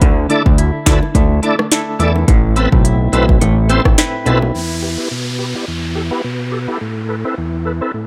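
A swung 16th-note dancehall groove at 106 BPM in 4/4 drives this bouncy, sultry A minor excerpt, built on an electronic afro-pop kit with a deep kick, sharp snare, smooth hi-hats and rim clicks, sitting up front with a tape-warm polish. A fat, detuned sawtooth analog bass with a filter sweep holds the low end up front, while round, low-tuned bongos add a very quiet acoustic layer. A clean, twangy electric guitar picks compressed arpeggios through a tremolo, and a bright, shouting tonewheel organ with light overdrive, chorus vibrato, key click and a slow rotary speaker fills in the chords up front over Dsus2, Amadd9, Em and Amadd9. At 4.5 seconds the bass and bongos stop and an electronic downlifter enters as a filter sweep runs on the organ, and the guitar stops at 5.1 seconds, leaving the organ and downlifter to carry on until 8.1 seconds. The mix is dry, with little reverb.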